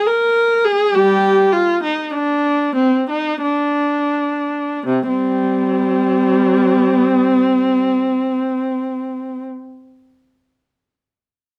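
Introspective and flowing, this short cut from a longer piece is a classical, baroque-style suite movement for unaccompanied viola in C minor, set in 3/4 at a slow 40-54 BPM with a free, rubato feel. A single bowed viola carries the whole performance, its warm tone coloured by vibrato and expressive portamento as it moves between C3 and Bb4. The tempo slows over the opening 4.8 seconds, after which a second section begins and runs to about 9.1 seconds. The instrument sits up front, surrounded by a light reverb that gives the sound a gentle sense of space. Tuned to A4 = 437 Hz, the playing sounds slightly below modern concert pitch.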